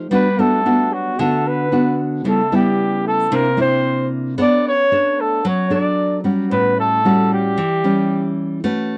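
A nylon-string guitar opens this short bossa nova fragment, cut from a longer piece, its thumb-plucked classical accompaniment sitting up front with the faint squeak of fingers on strings. Almost at once a flugelhorn takes the melody in a straight 4/4 feel, its warm, vintage tone shaped by scooped notes and a jazz phrasing. Beneath it, a trombone carries a second line, raspy and gritty with a soft attack and a growl, placed in the background. The harmony drifts through Gmaj7, C#m7b5, C9 and Bm9 before settling on A6, giving the passage a relaxed, romantic mood. The horns drop out at 8.3 seconds, and the guitar rings on until 9.0 seconds. A light reverb colours a dry, close sound in the manner of a 1970s studio.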